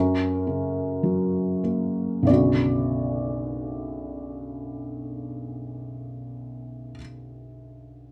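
A felt-muted upright piano opens alone, sitting up front with a soft, intimate tone and the natural sound of its action clearly audible beneath the notes. This brief classical fragment, cut from a longer piece, is a lyrical solo in B minor with a melancholic, dark mood, moving in a rubato 4/4 at roughly 46-57 BPM. It begins on an F# harmony and slows down through the first 2.3 seconds before settling onto a Bmadd9 chord, where a new section unfolds until about 7.3 seconds. The piano ranges from B1 up to D5, its mellow, muffled voice suiting the introspective character. Light reverb surrounds the instrument in a dusky, warm production, and the piano continues until 8.1 seconds.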